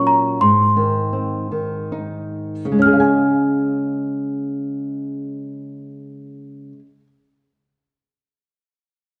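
Soaked in the reverb of a recital hall, this dark, warm recording catches a short slice of a longer children's lullaby in a rubato waltz time, innocent and sleepy in mood. A bell-like, delicate celesta with hard felt hammers carries the high, sweet melody, while an up-front, woody flamenco guitar with old strings, thumb-plucked, supplies the accompaniment across a broad range. The opening slows down through its first 2.8 seconds before the music moves into its next passage, both instruments sounding together until about 7 seconds in.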